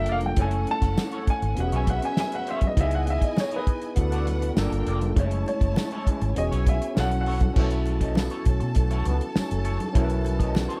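A straight 4/4 groove at 100 BPM drives this romantic, lush 1970s-style soul cut from a longer piece, anchored by a cloth-damped, thuddy drum kit up front, with a tight kick, medium-tuned snare and dark cymbals, beside a round, punchy, foam-muted fingered bass. A dark, mellow baby grand piano with audible action noise and short sustain carries the melody until 7.6 s, while a bowed string section with expressive vibrato adds a distant second line. An overdriven tine electric piano barks through a combo amp as gritty accompaniment, and a twangy electric guitar, slightly broken-up and treated with wah and vibrato, plays a riff in the background. Very quiet congas ring softly from a large room, joined by a jingly tambourine, and the band hits an accent at 5.2 s before a trombone section with light vibrato brings jazz-style stabs from 6.1 s. The harmony moves through rich chords such as F#m9, E6 and C#m9 before closing on B9sus4, all captured in a dry, close 1970s-style studio sound with little reverb.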